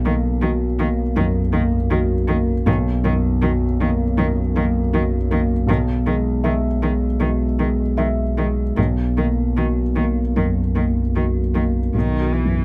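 Intimate and tender, this short excerpt of neoclassical piano and strings moves at an unhurried 78 BPM in B major, its rubato pulse giving the beats an uneven, breathing feel. A felt-muted upright piano sits up front with a dark, vintage mellowness across its accompaniment, while a saturated sub bass holds a deep, sine-like B1 beneath it, and a single bowed cello enters at 0.1 seconds with expressive vibrato and gentle portamento. Close, detailed microphones and light reverb keep the sound intimate as the harmony drifts from Bmaj7 to Emaj7/B before settling on B at 11.9 seconds.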